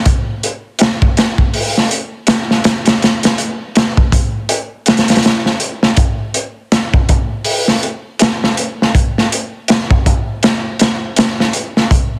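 A crunchy breakbeat drum kit carries this melancholic, dark trip hop excerpt, playing hi-hat, kick drum and snare drum from 0.1 to 12.1 seconds. The groove sits at 81 BPM in 4/4 with a 58% swing on the sixteenths, giving it a loping, unhurried feel. The kit has a gritty, saturated character with a rolled-off top and the texture of a vintage 12-bit sampler, and it sits up front in a small acoustic room with a punchy kick and a medium-tuned snare. Light reverb and heavily compressed, radio-like sound add to the murky, smoky atmosphere. The passage repeats the same section twice, splitting at 6.0 seconds, as it is cut from a longer piece.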